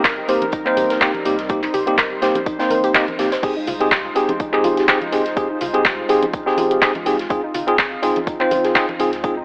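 Deep house with a warm, late-night mood, where an up-front, worn and slightly out-of-tune tine electric piano stabs over a sidechain-pumped sawtooth pad, a soft round pluck arpeggio with chorus and tape echo, a deep sine sub bass, an overdriven layered kick, a punchy analog drum machine with crash, handclaps and hi-hat, a very quiet unplugged kit played with bundle sticks and bright congas in the background, all set in an echo-chamber reverb with vinyl crackle and a telephone-like tone.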